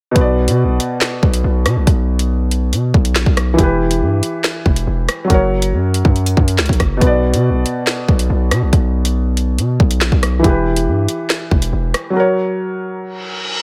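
A punchy, saturated 808 bass with a noise layer and fast, decaying attack drives this menacing, dark half-time drill excerpt, joined by an up-front electronic kit of hard-clipped kick, woody snare, metallic hats, rim clicks and handclaps, while a soft, felt-muted upright piano carries the mellow, intimate chords until the drums fall silent at 12.2 seconds and a reverse cymbal rises in at 13.2 seconds.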